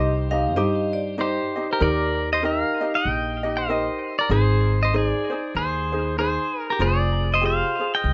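Dreamy and languid, this Hawaiian fragment sways in a swung 4/4, led by a twangy electric pedal steel guitar up front whose fingerpicked slide melody is shaped by volume swells, compression and analog delay. A metallic vibraphone struck with hard mallets rings out a second line with slow motor vibrato and its own delay until 1.8 s, as the harmony shifts from Cm to Eb, then Ab and Fmadd9. Beneath them a light, fingerpicked acoustic ukulele fills in the accompaniment and a woody, thumpy pizzicato upright bass on steel strings sits up front, all in a small room with the rough, dull-topped sound of a home demo.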